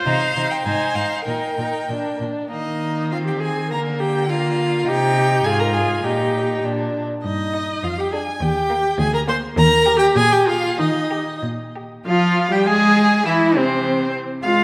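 A clear, focused first violin carries the melody with vibrato in this lively, cheerful quick classical-period movement for string quartet, cut from a longer piece and moving in 2/4 at 93-105 BPM with a rubato feel in Eb major. Beneath it, a smooth, even second violin sounds a little distant on the second line, while the viola's rich, up-front bowing supplies the accompaniment and the cello anchors the bass with soft attacks and expressive portamento. The harmony opens on C minor before settling into Eb major and closes on F minor moving to C, all bathed in a wet concert hall reverb.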